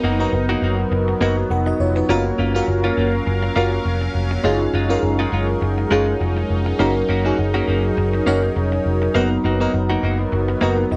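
This short pop passage, cut from a longer piece, opens with all five parts sounding together from the start, led by a lush, dreamy FM electric piano with a soft pad layer, set up front and coloured by chorus and phaser. Its fast-attack, decaying chords sit over a round, foam-muted picked electric bass that stays low and dark near the front of the mix. A clean, direct-recorded electric guitar plays a compressed, picked riff bathed in lush chorus and tape echo. Behind them, a sweeping resonant pad holds bright, airy sustained chords with a slow attack and a filter swell, while mellow synth brass adds full-bodied, chorused stabs with vibrato from the background. At 102 BPM with a light sixteenth-note swing, the harmony moves from Bmaj7/F# to C#add9/F# at 4.4 seconds and back at 9.2 seconds, all voiced over F#. The dry, close sound of a 1970s-style studio gives the nostalgic, glossy mood an intimate feel.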